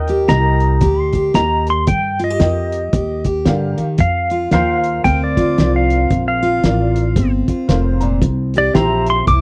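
Easygoing and sunny, this short cut of honky-tonk and classic country swings at 114 BPM in 4/4, with a twangy, bright pedal steel carrying the melody up front over a second pedal steel's warm sustained chords bathed in lush chorus, a jumbo acoustic guitar's full-bodied picking, a woody, thumpy upright bass and a cloth-damped drum kit with a fat snare and muffled, gritty tone, while a detuned, jangly upright piano sits in the background and slips in a fill from 7.4 to 8.2 seconds, the harmony moving through Eb, Fsus4 and C in a dry, close 1970s-style studio sound.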